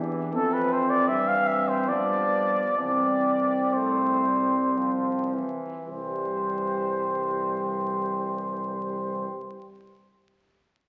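Warm and lyrical, this short, hymn-like classical passage for brass band sways in a rubato 3/4 in C major at 53-84 BPM, slowing through its first 5.9 seconds as chords move from C/G to G7 and settle on C. A mellow cornet with light vibrato, a soft attack and a smooth top carries the melody up front from 0.3 seconds. Behind it, a dark French horn section sings the second line, a very quiet trombone section and a brilliant solo trombone fill in the accompaniment, and a tuba anchors the bass, all set distant and roomy. The whole band sounds through a wet scoring-stage reverb and the crackle of a very old 78 rpm record.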